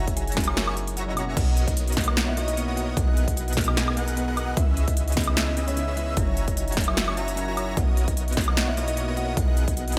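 A woody, ringing kalimba carries the melody from the first second, heard alongside an airy, dreamy lead tracing soft arpeggios in the background, a huge, thick supersaw riff and a deep, boomy 808-style bass. This is playful, lush future bass in B major at 150 BPM in 4/4, with a half-time feel and a light swing on the sixteenths. A punchy electronic kick and an up-front, big-room dance kit of crisp hats, snare, crash and woodblock arrive at 0.1 seconds, both tape-warm and re-recorded in a large room. Glassy digital keys join in the background at 0.3 seconds with chorus, a filter sweep and delay. Sidechain pumping breathes through the kalimba, lead, supersaw, bass and keys, while the kick briefly drops out at 1.0 seconds. The harmony moves through F#7, Bmaj9, G#m7/B and C#m9 under a light reverb in this excerpt from a longer piece.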